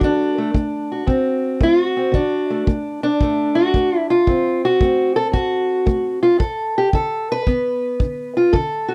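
Acoustic country blues with a rollicking, gritty swing, built on a dark, boxy fingerpicked parlour steel-string guitar carrying the melody up front over a punchy, natural kick drum played with brushes, all in a dry, close 1970s-style studio sound with light reverb, moving from D7 to G at 6.4 seconds in this short cut from a longer piece.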